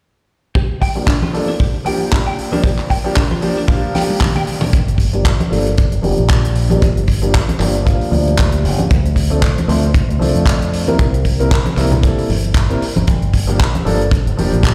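A tight kick sits up front in a 4/4 groove at 115 BPM, with a light 16th-note swing, while a natural, small-room funk kit adds handclaps, hi-hat, a high-tuned snare and toms, and ringing, low-tuned congas played with hard hands sit close yet in the background. This cosmic, groovy nu-disco cut in G dorian opens with a bright, clean, picked electric guitar riff, recorded direct and compressed, colored by ensemble chorus, a low-pass filter and tape echo. A boxy grand piano plays accompaniment up front, pumping through sidechain compression, with tape echo and a filter sweep running across both sections. After a drum fill at 3.9 seconds, the guitar stops and a punchy fingered electric bass with an envelope filter takes over the low end at 4.7 seconds. The harmony moves from Gm7 through Dm7 and C7 before returning to Gm7, and the whole mix rings with stone-room reverb, as if played on a big sound system in a bare room.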